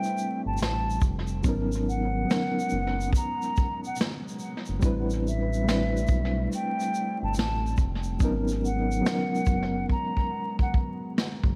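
Lo-fi hip hop with a melancholic, hazy mood and a swung feel, cut from a longer piece, moving between Am11 and G#m11 chords under vinyl crackle in an echo-heavy mix. A hollow, airy concert flute carries the melody through tape echo over a reedy, slightly out-of-tune electric piano with fast tremolo, while a warbling, nostalgic tape-like pad with chorus and phaser sits in the background. A vintage brush drum kit with a punchy kick sits up front, a smooth, dark synth bass joins at 0.5 s, and the drums play a fill from 9.9 s to the end at 11.6 s.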